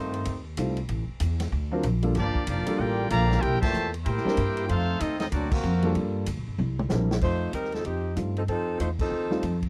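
A swung 4/4 groove at 190 BPM drives this energetic big band swing excerpt in F major, with the pizzicato upright bass sitting woody and up front and a vintage drum kit giving a punchy kick, medium-tuned snare, ride, hi-hat and crashes with a rolled-off top in a small room. A brilliant trumpet section carries the melody with light vibrato, and a trombone section beneath it adds a soft-attacked second line, the two horn sections playing together until 6.0 seconds while the band hits accents along the way. A short-sustain baby grand piano comps with a warm, natural tone over changes that move through F7, D7alt, Gm7 and C7. After a drum fill at 6.6 seconds, a tight, mellow saxophone section takes over the melody at 7.2 seconds, up front and singing with vibrato. The whole take has a dry, close 1970s studio sound with little reverb, and it is cut from a longer piece.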